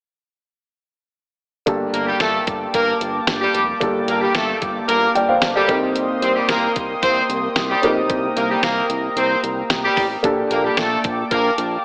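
A straight 4/4 beat at 112 BPM from a clean 12-bit drum machine, with a thumpy kick and fat snare, drives this moody, urgent 1980s-style pop fragment in G minor, where a dark, mellow grand piano, a shimmering chorused pulse-width pad and a thick, detuned analog bass move from Gmadd9 to Cm7 and back, while a distant-sounding horn section with light vibrato adds tape-echoed stabs from 1.9 seconds, the mix bathed in a lush hall reverb and an AM radio tone.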